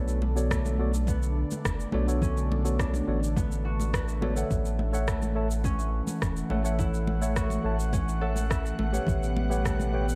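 Dark production with a moderate recital hall reverb frames this wistful sunset chillout excerpt, where a worn, slightly out-of-tune tine electric piano and fingerpicked concert harp arpeggios, both touched with digital delay, float over an airy, breathy chorused pad, while a round, deep analog bass sits up front and a soft electronic kick, tape-warm shaker and rim click, and damped congas in the background keep a straight pulse through Bm9, F#m7 and A13.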